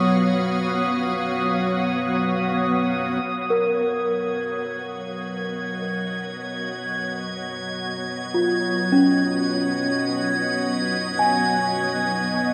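A huge, wet reverb with a long tail surrounds this peaceful ambient excerpt, which floats in free time in B lydian. A soft, organ-like pad holds sustained chords throughout, its pure, detuned tone thickened by ensemble chorus and a sub octave; it sits bright and up front, moving from Badd9 to B69 at 3.2 seconds and fading in from there. Beneath it, a calm organ-like drone on B3 lingers in the background, its sine tone shaded by a moving notch, until it stops at 3.3 seconds. High above, a glassy texture of drifting overtones stays up front for the whole passage. At 3.5 seconds a delicate, bell-like celesta enters with sweet, airy arpeggios softened by medium felt hammers and trailed by tape echo.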